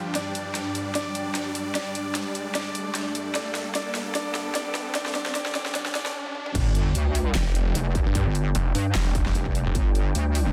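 Chaotic and aggressive, this heavy wobble dubstep excerpt at 150 BPM in a swung half-time 4/4 opens with a build-up in which a filtered, delay-touched grand piano plays the melody over huge, bright supersaw chords, a dark, chorused ambient pad in the background, a riser, and a dubstep drum kit with a huge snare and bright hats working through a long drum fill. After a stop at 6.2 seconds, the drop hits at 6.6 seconds with an impact, as a detuned, overdriven wobble bass pushes up front alongside a distorted, layered electronic kick. A growling, snarling saw bass joins from 7.4 seconds, all inside a dense, heavily limited master with light reverb.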